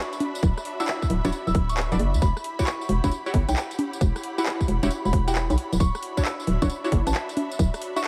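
An airy, ethereal pad and a lush, bowed string section open this bouncy, late-night two-step garage excerpt, both sitting in the background as the chords move from Dmaj9 to Em69 and back, with the pad pumping against the kick under its ensemble chorus and reverb. A garage kit of congas, handclaps, metallic hi-hats, rim clicks and tambourine fills in the percussion from 0.1 seconds, and from 0.4 seconds a tight, up-front electronic kick and a hollow, knocking FM bass drive the swung groove. At 0.8 seconds a punchy, warbling chord stab with vintage 12-bit sampler grit and a gentle, pure synth bell enter, both carrying chorus and analog delay, all over a bed of vinyl crackle and digital ambience.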